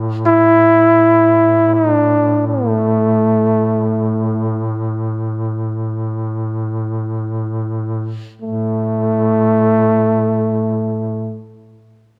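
In free time, this Caucasian folk lament moves with a longing, solemn mood, gradually slowing from 0.8 to 8.4 seconds before a new section begins. A mellow duduk, with vibrato and a smooth top, holds a low drone from the start and sits beneath a clear trombone that enters at 0.3 seconds. The trombone carries the melody in a classical style with light vibrato, up front in a light reverb.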